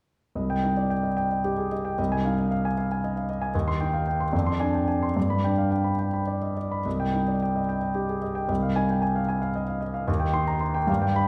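Heard from further back in a wet recital hall, a clear, intimate grand piano with audible action noise and long, natural sustain plays a stormy, brooding romantic character piece alone in 6/8 with free rubato, spanning a range from C2 to C6 from 0.4 to 11.3 seconds in this short cut from a longer work.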